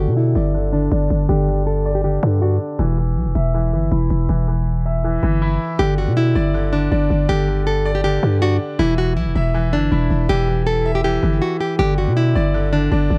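Hip hop and trap at 160 BPM in a half-time feel, this triumphant, dreamy excerpt in G major moves between G and E minor chords over a growling, buzzy 808-style bass that sits up front. A fingerpicked nylon-string guitar with a dark, filtered tone and delay carries the melody, dropping out after 2.6 seconds and returning at 5.8 seconds. Beneath it an intimate concert grand piano with audible action noise and long sustain plays the accompaniment, all in a dry room, with a filter sweep over the first 5.8 seconds and a brief stop at 11.4 seconds before a closing G chord.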